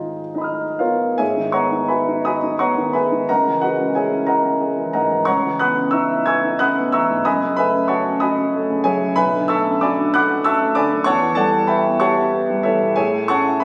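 An intimate, natural-sounding grand piano, up front with audible action noise and long sustain, carries this wistful, nocturnal impressionist solo in a rubato 6/8, drifting from G#m6 through rich ninth and sixth chords to a closing Amaj7 over 13.6 seconds, its phone-in-the-room capture framed by moderate scoring-stage reverb and compression in a fragment cut from a longer piece.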